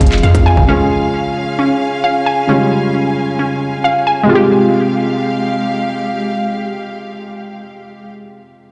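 An eerie half-time trap fragment opens with punchy 808 bass, a trap kit of hard-clipped kick, crisp hats and handclaps, and a barely audible downlifter that all drop out by 0.7 s, leaving a mellow, low-passed grand piano, veiled con sordino strings and a glassy, detuned wavetable pluck arpeggiating through chorus and digital delay in a bare, reverberant room.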